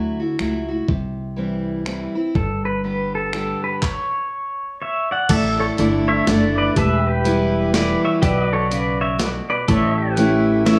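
Swung eighths at 123 BPM in 3/4 carry this nostalgic, easygoing honky-tonk and classic country excerpt, which opens on an up-front, warm picked steel-string acoustic guitar and a woody, dark pizzicato upright bass, joined by a gritty, compressed boom bap sampler-style kit with a thumpy kick, high-tuned snare, hi-hat, crash, finger snaps and handclaps; at 2.4 s a bright, twangy pedal steel takes the melody with slide and volume swells, and from 5.3 s a second pedal steel holds sustained chords in the background beside a very quiet, mellow vintage upright piano, set in a light small-room ambience.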